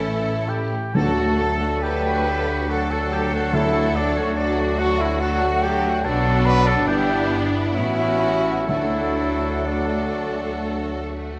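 Lyrical and warm, this slow, romantic symphonic movement in D major sways in 3/4 at 70 BPM with an elastic rubato feel, a short cut from a longer work whose harmony settles from A to D and passes through Bm7, Em7/G and A13 before coming home. A lush violin section with vibrato carries the melody over a very quiet second violin line, while clarinet, a pure, hollow flute and a warm oboe add background counter-lines, and distant viola and mellow bassoon fill the accompaniment. Very quiet French horns and trombones hold sustained chords, a roomy trumpet adds stabs, smooth cellos and up-front double basses anchor the bass, and articulate hard-mallet timpani sound from 0.9 to 10.1 seconds, all within a wet scoring-stage reverb.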